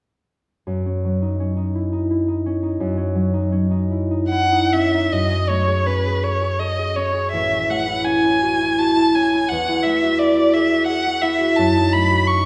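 This impressionist classical duo for violin and harp has a hazy, wistful mood, moving in a rubato 3/4 at roughly 70-89 BPM in F# dorian, tuned to A4 = 441 Hz. The concert harp opens alone at 0.7 seconds, its thumb-plucked, ringing acoustic tone spanning a low-to-middle range as it carries the accompaniment through chords such as F#madd9, Amaj7, Esus24 and F#m6. A single bowed violin enters at 4.3 seconds with the melody, rich and focused, with vibrato and a smooth top end, ranging from B4 up to C#6. Both instruments sit up front, and the music shifts into a second section at 5.1 seconds. A wet recital-hall reverb with a 1.4-second decay places the pair in a church or concert hall, and this fragment is cut from a longer piece.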